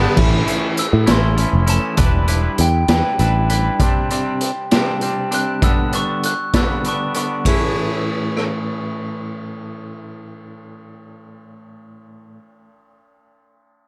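A bell-like glockenspiel struck with hard plastic mallets carries a featured solo through analog delay until 7.5 seconds in this carefree, wistful indie rock excerpt in 6/8 at 66 BPM in A mixolydian, over a clean, twangy electric guitar riff with harmonic tremolo and delay that runs to 12.4 seconds, a round, punchy picked bass that stops at 3.7 seconds, and a gritty, saturated garage drum kit with a boomy kick, in an echo-heavy mix with light small-room reverb as the chords move from A through Em7, Csus2 and G back to A.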